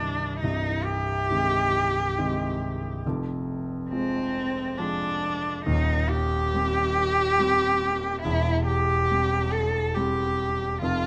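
A single bowed cello sings the lyrical melody up front, its expressive line colored by vibrato and portamento, while a concert grand piano supports it with warm, deep bass. This romantic classical duo moves in a flexible, rubato three-beat lilt, passing through Ab/C, Fm, Cm/Eb and C/E in a warm, lyrical mood. Close, detailed microphones and light reverb capture this brief excerpt, which is cut from a longer piece.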